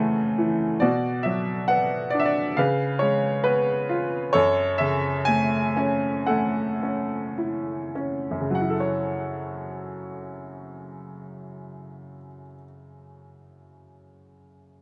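A rubato 4/4 pulse, slowing between 0.8 and 8.5 seconds, shapes this reflective, dark excerpt of lyrical classical music for solo upright piano, whose bright, woody tone sits up front in a close, detailed and nearly dry recording across 14.8 seconds.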